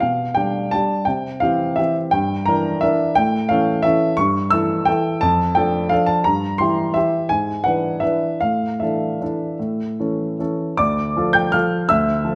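Swaying in a rubato 3/4 waltz, with the pulse flexing between 145 and 183 BPM, this short classical piano piece in D minor carries a bittersweet, elegant mood. A solo upright piano plays throughout, ranging from D2 up to G6, its tone woody and intimate, with audible action noise and a natural, up-front presence. The harmony moves through G7/B, C and Em7b5/G, then leans on A and A7/G before passing through Dm/F, Edim/G and E7/G#. An Asus4 settles onto A, and at 10.8 seconds a new section opens on a Dm chord. A moderate reverb from a large studio surrounds the piano, and the passage is cut from a longer piece, ending at 12.3 seconds.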